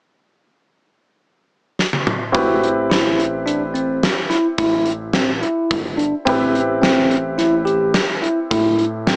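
Heard through a small-speaker sound bathed in wet studio reverb, this tense, driving fragment from a longer progressive instrumental piece moves at 107 BPM in 7/4 in A minor: a punchy, gated 80s drum kit in a bright stone room enters with a fill at 1.8 s, and at 2.3 s, over an Am7 chord, a bell-like tine electric piano plays phaser-tinged arpeggios alongside an intimate concert grand piano with audible action noise and long sustain and a fat sawtooth analog bass carrying a filter sweep.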